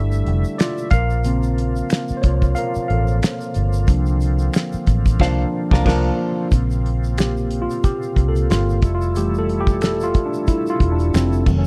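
A worn, slightly out-of-tune tine electric piano leads this relaxed, smooth R&B and neo-soul excerpt in F major at 91 BPM with a swung sixteenth feel, its lightly overdriven tone pushed through a combo amp and sitting up front. A reedy tonewheel organ with key click and fast rotary speaker holds sustained chords beneath it. A dark, foam-muted fingered bass, an egg shaker with finger snaps and a dry 70s drum kit with a fat snare and tight kick keep the groove, and the band hits an accent from 5.2 to 6.5 seconds as a clean, compressed semi-hollow guitar line with tremolo slips in briefly, all set in a close 1970s-style studio sound with small room ambience.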